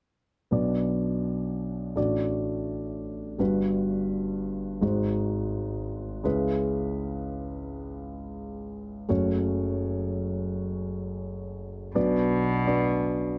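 A dark, mellow grand piano opens this heartbroken acoustic folk-pop ballad at 0.5 s, carrying the melody at an unhurried straight pace, its intimate tone close enough to catch the audible noise of its action. The harmony drifts through Bm, Gmaj7 and C#m7 before returning to Bm, where a single bowed cello joins at 12.0 s with a reedy, gut-string bass note in a period style. Light reverb and detailed close microphones keep this melancholic fragment, cut from a longer piece, feeling near and personal.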